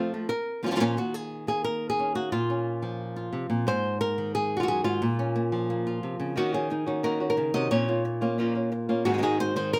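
A light reverb surrounds this intense, dramatic flamenco recording, cut from a longer piece, in Bb minor at a brisk 178 BPM in straight 4/4. Two acoustic flamenco guitars carry it, both fingerpicked. The lead guitar sits up front and plays the melody throughout, ranging from Gb2 up to Eb5 with a warm tone. A second guitar adds stabs in the opening second, drops out, and returns at 6.4 seconds to play through to the end. The harmony circles Bb minor with turns to Ab and an Ebm7, keeping the mood intense and dramatic.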